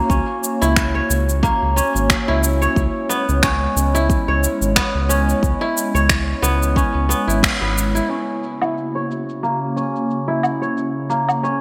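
A swung sixteenth-note groove at 90 BPM in 4/4 drives this hypnotic, warm organic downtempo excerpt, built on a deep, layered electronic kick, a round, dark analog bass with tube saturation and sidechain pumping, and an up-front layer of electronic shaker, finger snaps and woodblock under gated reverb. A crisp, ringing fingerpicked kora plays filtered arpeggios through digital delay over a warbling, nostalgic lo-fi pad of detuned, chorused sustained chords, moving from F# to C#m. Around a band accent at 7.4 seconds, the kick and bass drop out, and from 8.1 seconds filter sweeps wash over the percussion and the pad on an F#/C# chord, all set in a moderate plate reverb with a bright 1980s-style digital sheen.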